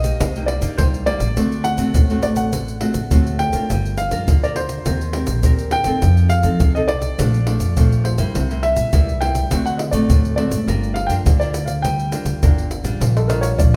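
Lively and bittersweet, this samba and choro passage in G minor moves at 103 BPM in a straight 4/4, with an intimate baby grand piano carrying the melody, its action noise audible, over a small, fingerpicked nylon-string guitar with old, woody strings. A pizzicato upright bass with a warm tone anchors the low end, while egg shaker, pandeiro, tight surdo and tamborim sit close, dry and up front, played with hard hands. The band plays live together in one large studio with moderate reverb, cycling through chords such as Cm7, D7, Gm7 and Bbmaj7 before landing on Bb6 at 13.0 seconds in this fragment cut from a longer piece.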